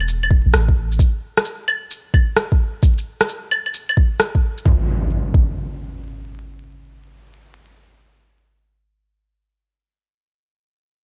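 A soft, round 808-style bass opens this ghostly, nocturnal future garage fragment, its deep, dark sine tone pumping under sidechain for the first second before falling away. Up-front electronic claves, shaker and rim click run until 4.6 seconds over a swung sixteenth feel at 131 BPM in 4/4, while an overdriven electronic kick joins at 0.3 seconds, with both drum parts sitting in studio reverb. From 4.7 seconds an electronic impact enters as the section changes, all over a bed of vinyl crackle in this short cut from a longer piece.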